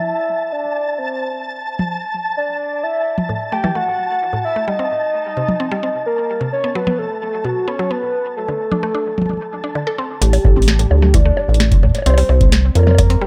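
A straight 4/4 pulse at 130 BPM drives this cerebral, melancholic IDM excerpt in A dorian, tuned to A4 = 438 Hz, with a booming analog drum machine of bongos, metallic hi-hat, tonal snare and toms entering at 1.8 s under dub echo. A warbling, nostalgic lead of detuned triangle and sawtooth with vibrato and chorus carries the melody over a flickering, grainy granular texture that pumps to the sidechain, while a woody, round FM pluck plays arpeggios through phaser and chorus from 3.3 s. At 10.2 s the music moves into a new section where a rubbery, tube-saturated acid bass with a resonant filter sweep enters, joined moments later by a deep, dry electronic kick, inside an echo-heavy mix with light reverb.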